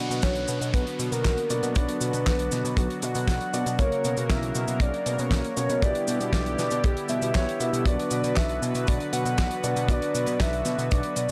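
A dry, gritty recording with transformer saturation and small-room ambience frames this bittersweet, melodramatic italo disco excerpt at 118 BPM in B harmonic minor, where a round, dark octave-layered synth lead with chorus, phaser, tape echo and vibrato carries the melody over a smooth, detuned sawtooth pad with chorus and tremolo, boxy background piano stabs with audible action noise, a thick, detuned sawtooth bass with a filter sweep, a tight, up-front kick, a damped 70s kit of fat snare, hi-hat, handclaps and cabasa, and a background electronic downlifter that stops at 3.8 seconds, as the chords move from Bm through F#/B and Em7/B back to Bm.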